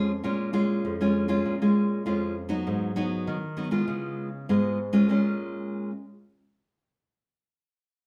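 This samba short excerpt in Bb minor moves at 99 BPM in a straight 4/4, lively yet yearning, with a solo fingerpicked nylon-string guitar carrying a classical, acoustic tone from F2 to F4 through changes from Bbm7 to Abm7 and Db7 before returning to Bbm7 at 5.1 seconds. The guitar sits up front, though the recording carries a wet studio reverb and is heard from further back in the room, and it stops at 5.9 seconds. The tuning rests at A4 = 436 Hz.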